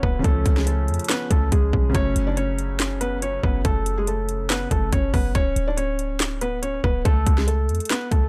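A deep, boomy 808-style bass with a clean sine tone and a fast attack that decays sits up front in this dark, hard-hitting half-time trap excerpt, alongside an electronic kit of hard-clipped kick, sharp snare, handclaps and metallic hats. Over them, a felt-muted upright piano carries a soft, intimate melody through delay, its action noise audible, while a second muted piano part plays mellow accompaniment until 5.4 seconds. A small room ambience surrounds the parts as the harmony moves from C# to F#m and Bmadd9/D before dropping out at 7.1 seconds.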